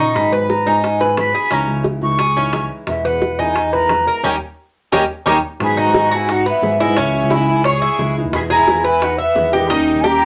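Danceable and nostalgic, this short cut from a longer Cuban son and guajira piece moves at a brisk 176 BPM in 4/4 with a straight feel, in G# minor. An airy, mellow metal flute carries the melody with vibrato and tongued phrasing, sounding distant yet expressive, while the up-front Cuban tres picks metallic arpeggios on its double strings, some doubled at the octave. Underneath, a small fingerpicked nylon-string guitar sits in the background, a bright, clean tine electric piano played through its built-in speakers takes the bass line, and tight, high-tuned bongos struck with hard hands come in close and dry at 0.2 seconds. The band hits an accent at 4.2 seconds, and at 5.6 seconds an earthy, rich chamber violin section enters with a bowed second line and light vibrato, heard at a distance. The harmony cycles twice through G#m7, C#madd9, Emaj7 and D#7, all set in a wet studio ambience.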